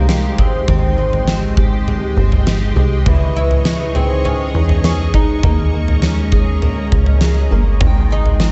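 A huge arena drum kit drives this dream pop excerpt at 101 BPM in a straight 4/4, its punchy kick and fat snare sitting up front in a big room with toms rounding out the pattern, while a plucky analog bass with a wave-folded, funky bite anchors the low end. The mood is floating and ethereal in Ab major, moving from Abmaj7 through Dbmadd9 and Eb7sus4 before returning to Abmaj7 at 7.8 seconds. A woody, plectrum-plucked oud carries the melody through a digital delay, its fretless double strings giving a deep voice, as a fingerpicked twelve-string acoustic guitar spins shimmering, octave-doubled arpeggios with audible finger squeak under ensemble chorus and delay. A vintage string machine voicing violas holds sustained chords with a soft attack, colored by phaser and ensemble chorus. At 7.9 seconds a soft, pure FM bell appears in the background on a single high note, treated with chorus, tremolo and delay. 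Light reverb and studio ambience frame the mix, which keeps a gentle, rolled-off top end.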